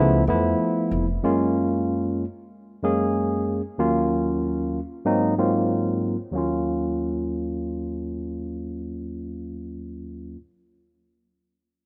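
A swung sixteenth-note groove at 94 BPM in 4/4 drives this smoky, nocturnal jazz-hop fragment in Eb minor, tuned slightly flat to A4 = 436 Hz and cut from a longer piece. A woody, thumpy pizzicato upright bass with gut strings sits up front only until 1.2 s, while a bright, barky tine electric piano carries the chords through Db7alt, Gbmaj9, Ebm9 and Ab9, its low-pass filter sweeping until 6.3 s before a new section returns to Ebm9. Light reverb and a small room ambience frame the rough home-demo mix.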